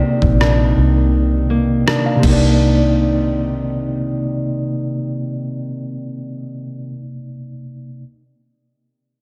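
Sensual and late-night, this short contemporary R&B excerpt in C minor moves at 82 BPM over a Cm9 chord, with a mellow, clean tine electric piano softened by a low-pass filter and a fingerpicked nylon-string guitar, filtered and touched by tape echo, playing arpeggios with audible finger squeak, joined at 0.2 seconds by a dark, round, foam-muted electric bass and a detuned, overdriven 8-bit drum machine with a thumpy kick, crash and rim click that stops at 2.4 seconds, while a very quiet downlifter ends at 2.6 seconds inside light digital reverb.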